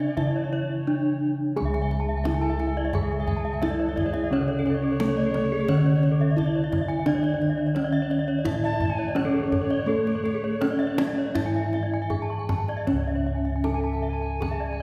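A straight 4/4 pulse moves at 78-87 BPM in this shimmering, hypnotic Balinese gamelan passage in C# pelog, cut from a longer piece. A close-miked, dry and full bronze metallophone carries the melody with a wooden mallet, its paired tuning producing ringing, shimmering beats. Beneath it, round, mellow bossed gongs struck with padded beaters hold the bass with a soft, vintage, band-limited tone placed up front, while a deep kendang adds percussion in a small room. A very quiet metallophone plays accompaniment until 12.9 seconds, and two horn-mallet metallophones weave arpeggios: one in a boxy small room with a warm glow, the other bright and carrying tape echo, entering at 0.3 seconds. An airy wooden alto recorder traces a second line with vibrato, tongued chiff and expressive phrasing, and a wet concert hall reverb sets the ensemble further back in the room as the opening material returns near the end.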